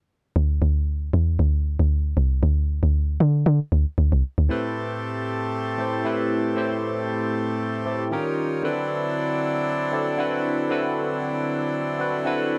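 This soulful amapiano excerpt opens on a drop, with a round, dark log drum bass playing alone from 0.4 s at 116 BPM, swung on the sixteenths in A dorian. At 4.5 s the bass gives way to a bright, barky electric piano treated with phaser and a reedy, hollow accordion holding sustained chords, moving from Am9 to D#9 and then D13. Both keyboard parts sit up front in light reverb with a touch of studio ambience.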